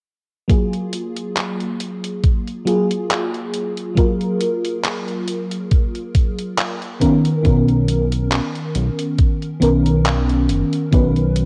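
A dark, lush FM electric piano with a soft pad layer sounds from 0.5 s in this dreamy, faded vaporwave excerpt, its chords carried by tremolo, chorus and delay alongside a gently swung beat from a thumpy, up-front electronic kick and a detuned 8-bit drum machine of handclaps and hi-hat, both in small room ambience and entering together with the piano. The harmony moves from F#maj9 to Bmaj9 at 7.0 s, and a glossy, chorused synth bass with a pulse-wave, filter-plucked tone enters low at 7.5 s. Light reverb and a worn cassette-tape warble with pitch drift color the whole recording.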